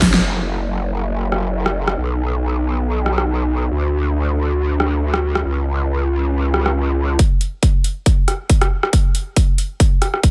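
A dry, up-front mix opens this chaotic, aggressive fragment of heavy wobble dubstep with a drum fill and a band accent, riding a swung, half-time groove. A growling, detuned bass with overdrive, chorus and a formant-filtered wobble dominates until 7.2 seconds, while a big-room dance kit of huge snare, metallic hats and rim click drives underneath. The punchy, overdriven electronic kick, heard briefly at the start, returns at 7.2 seconds to power a build-up with the kit through to the cut at 10.3 seconds.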